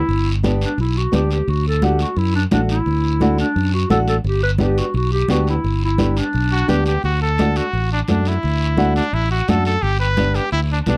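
Festive and sunny, this cumbia excerpt opens with an intimate, breathy clarinet solo with light vibrato and scooped notes, over a warm fingered electric bass up front, ringing congas in the background, a raspy guiro and a dark, fingerpicked nylon-string guitar. A bright trumpet enters with the melody at 6.5 seconds, carrying a slapback echo, and the clarinet stops at 6.9 seconds. The sound is a dry, close 1970s-style studio recording with light reverb.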